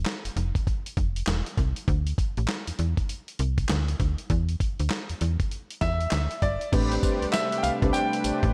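New jack swing R&B with a slick, confident swagger and a dreamy wash of hall reverb opens on a snappy, metallic slap-like FM bass and a gritty, compressed sampler-style drum kit with thumpy kick, handclaps and tambourine; a brilliant concert grand piano melody with delay enters at 5.8 seconds, and at 6.7 seconds a round FM electric piano, a shimmering retro pulse-width pad and dark, detuned synth brass stabs with vibrato join to fill out this short clip from a longer piece.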